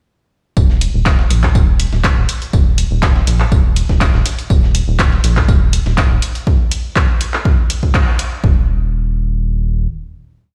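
At 0.6 s a sparse, clinical minimal techno groove begins, with an up-front, punchy four-on-the-floor electronic kick, a rubbery, hollow, dark square-wave bass bouncing in a dotted rhythm with sidechain pumping, and a gritty, tape-warm sampled breakbeat of hi-hat, snare and tambourine tucked in the background, joined at 0.8 s by a programmed analog drum machine's handclaps and closed hats, all played back nearly dry through a big sound system in a bare stone room until a band accent at 7.9 s leads to a final sustained bass note.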